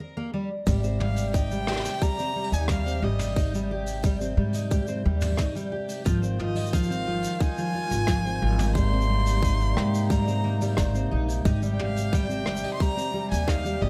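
A fingerpicked twelve-string acoustic guitar opens this playful, warm folktronica excerpt on its own, its shimmering, octave-doubled arpeggios carried on digital delay and plate reverb. At 0.7 seconds the band arrives: a tight, tape-tinged electronic kick sits up front beside a woody pizzicato upright bass, while a vintage brush kit with a rolled-off top adds hi-hat, rim click, shaker and toms from a mid-forward position. A reedy, breathing pedal harmonium holds sustained chords roughened by 12-bit sampler grit, and a grainy, flickering granular texture hovers in the background from 1.3 seconds. From 1.0 seconds a dark, nasal violin carries the melody up high, its bowed line rich in vibrato and portamento with a boxy, expressive tone. The harmony moves from Abmaj7 through Fm7/Ab and Cm7/Ab back to Abmaj7, set in a light room reverb.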